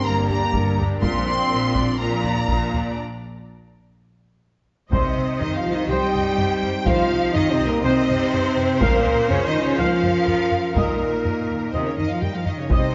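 Bowed strings, mellow French horns, woodwinds and a very quiet, punchy trombone section open this dark, relentless excerpt of epic orchestral film score. Two violin lines and the violas sit lush with vibrato in the background, while cellos and woody double basses carry the bass and a taiko ensemble pounds with heavy sticks beneath. After a break from 3.0 to 4.9 seconds, a brooding new section begins where a distant, roomy trumpet section adds stabs over the sustained horn, trombone and woodwind chords, the whole orchestra washed in scoring-stage reverb.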